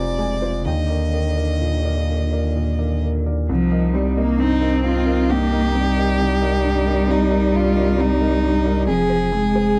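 A dry, close 1970s-style studio sound frames this reflective, longing neoclassical fragment for piano and strings in a rubato 3/4, where an up-front violin with rich vibrato carries the melody over a focused, distant cello line, a felt-muted upright piano with audible action noise and a deep, saturated sub bass, while a viola with soft attack and portamento slips into the background at 3.5 seconds.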